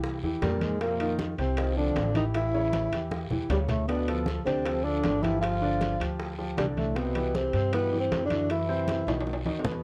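A breathy tenor saxophone leads this sunny, sophisticated Afro-Cuban jazz fragment, its dark, whispered subtone tone, soft attack, scooped notes and vibrato sitting up front and intimate. Entering at 0.4 seconds alongside it, a dark trombone with light vibrato carries a second line in the background. Underneath, a woody, growly pizzicato upright bass sits prominently, while a grand piano with short sustain and audible action noise supplies the accompaniment over chords that move from C7 through Dm7 to Cmaj7#11. Bright, softly played congas, tight high-tuned bongos and ringing metal-shell timbales stay in the background, joined by a raspy, saturated guiro, with drum fills at 3.1 and 8.5 seconds. Light reverb and the wobble of worn cassette tape give the recording an aged character, and the passage is cut from a longer piece.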